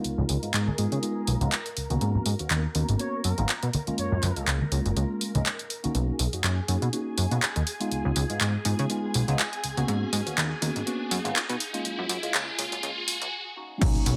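A swung 4/4 groove at 122 BPM drives this sunny, funky filtered disco house excerpt, with a house drum kit of handclaps, hi-hat and crash cymbal, its hats and cymbals pumping against the sidechain, while tambourine and congas sit bright and dry in the background until 5.9 seconds. Up front, a plucky analog bass with a fast, decaying filter pluck anchors chords that move from Bmaj9 through G#m11 to F#maj9, joined by a worn, slightly out-of-tune tine electric piano carrying lo-fi sampler grit and phaser. Behind them, a swirling, warbling string machine holds sustained chords with ensemble chorus, and a brilliant trumpet section with light vibrato states a short melody through tape echo early on. From 5.9 seconds a filter sweep builds tension, at 9 seconds an electronic riser enters, and after a brief break a punchy, tape-warm electronic kick lands at 13.8 seconds. The whole mix sits in light digital reverb.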